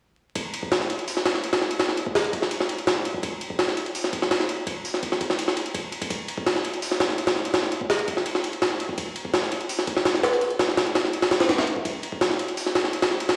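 Dark and nostalgic, this drum and bass excerpt at 167 BPM in a straight 4/4 sets a gritty, pitched-up jungle sampler-style kit of thumpy kick, high-tuned snare, hi-hat and ride cymbal up front from 0.4 to 13.4 seconds, its compressed, filtered hits re-recorded in a large room and bathed in a 1.6-second echo-chamber reverb, stone-room reflections, the playback of a big sound system in a bare space, and a layer of vinyl crackle.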